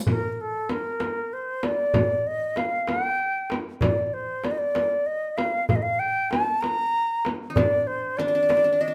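A hypnotic 6/8 pulse at 64 BPM comes from a deep, up-front frame drum and a clay-shelled darbuka sitting in the background, setting a melancholic Arabic maqam ensemble piece in D maqam kurd. Over them, a pure, mellow silver concert flute carries the tongued melody with vibrato, while the bright-edged triple strings of a fingerpicked qanun appear briefly at the start and return at 7.5 seconds. The band plays live together in a moderate stone room reverb, and the passage is cut from a longer piece.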